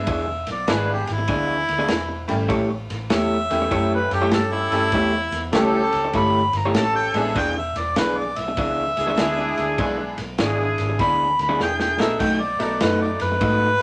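Rollicking and laid-back, this electric blues shuffle in E mixolydian swings at 99 BPM as an up-front harmonica with light vibrato and scooped notes solos over a jangly tack piano, a round, foam-muted bass, a slightly broken-up guitar riff through a small old amp and a gritty, saturated breakbeat kit with dark cymbals, with loose, close-miked horn stabs joining at 4.1 s and a drum fill at 11.6 s before the turn to B7 at 12.2 s, all in moderate studio reverb in this cut from a longer piece.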